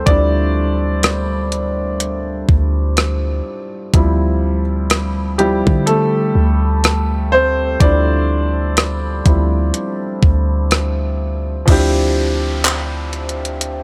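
Late-night and full of longing, this contemporary R&B fragment, cut from a longer piece, settles into a lazy swung groove. A clear, intimate grand piano sits up front and carries a solo through the first 11.7 seconds over a Dm11 harmony, its long sustain and audible action noise giving it a natural, close-up feel. Beneath it, a clean 808-style bass supplies deep, boomy sine tones that hit fast and decay into darkness. A gated 80s digital drum machine, the loudest part, punches through with a thumpy kick, handclaps, hi-hat, rim clicks and crash cymbal, its sampler-style hits sounding tape-warm and re-recorded in a small room with gated reverb. At 11.7 seconds an electronic downlifter slides in, and at 12.6 seconds a faint FM synth chime rings in the background with an inharmonic shimmer, dressed in ensemble chorus and digital delay, all wrapped in a digital ambience.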